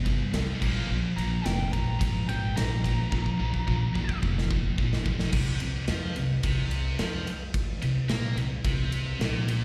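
Captured live through a venue's PA with a touch of recital-hall ambience, this heavy, driving hard rock fragment pairs two picked, high-gain electric guitars with distortion and slapback echo, one bright and one scooped in the background that stops at 5.3 seconds, over a woody, up-front pizzicato upright bass and a punchy big-room drum kit with bright cymbals, while a biting, overdriven lead guitar solos briefly from 1.2 seconds and a drum fill arrives at 3.1 seconds before the riff shifts into its second section.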